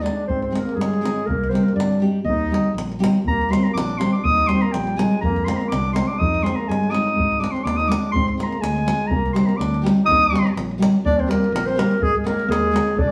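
A mellow, classical-style clarinet leads up front through this virtuosic, wild Balkan wedding-band piece in a straight 2/4, with a clear trombone carrying a second line beneath it, a fingerpicked nylon-string guitar offering warm accompaniment, a round, direct fingered electric bass, and a tight, close and dry davul, all heard as a band playing live in one small room under a wet studio reverb in this excerpt cut from a longer performance.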